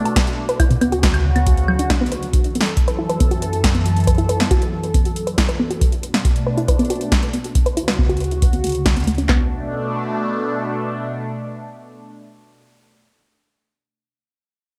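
IDM with an eerie, intricate mood, this cut from a longer piece places a swirling, detuned analog pad of sustained chords up front, colored by phaser and chorus, beside soft, round plucked arpeggios carrying chorus and digital delay, with filter sweeps moving through both until 9.3 s. Two tape-warm electro analog drum machines drive it: one supplies a deep kick, handclaps and punchy snare, the other metallic hats, snare and woodblock fed through delay. By about 9.5 s the drums and arpeggios have dropped out, and the warbling pad carries on alone to 12.6 s inside a lush hall reverb and a bright 1980s-style digital sheen.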